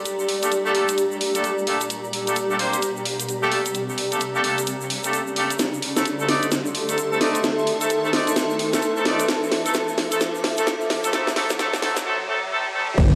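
A gritty, aggressive bass house build-up opens with an electronic riser and a cloudy, evolving granular pad that carries its own reverb and pumps against the sidechain. A garage drum kit with a cracking snare and a grainy shaker, close and dry, join in, along with brilliant, up-front horn stabs marked by light vibrato, octave doubling and digital delay, while a drum fill runs from 5.6 to 12.1 seconds in a lush hall ambience. At 13.0 seconds a punchy, tape-touched kick and a metallic, distorted wobble bass with chorus strike hard up front just as the cut ends.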